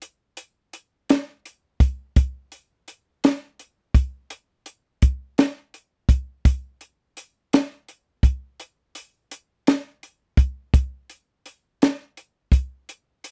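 A dry, close 1970s-style studio sound with light reverb frames this tender, sensual R&B excerpt at 56 BPM in a straight 6/8, where a compact acoustic cocktail drum kit sits up front for the full 13.3 seconds, its punchy kick, high-tuned snare and hi-hat carrying the excerpt alone.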